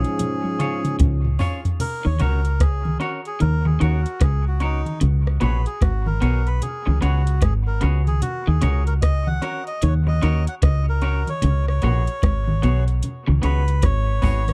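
A laid-back, hypnotic roots reggae groove at 75 BPM in Eb minor, swung on the sixteenths, rides on a soft vintage rhythm box with a deep kick and metallic hats and a round, punchy, foam-muted fingered bass, both up front, while low-tuned congas sit in the background from 0.2 seconds. A smooth-topped trombone section opens with a brief line carrying dub echo that ends at 1.4 seconds, and a drum fill leads into a reedy, breathy melodica solo over Ebm7 and Db7sus4 chords, also trailing dub echo. A bright, clean semi-hollow guitar adds spring-reverbed, echoing accompaniment and a slightly broken-up electric guitar picks a low riff in the background, all captured in a dry, close 1970s-style studio sound.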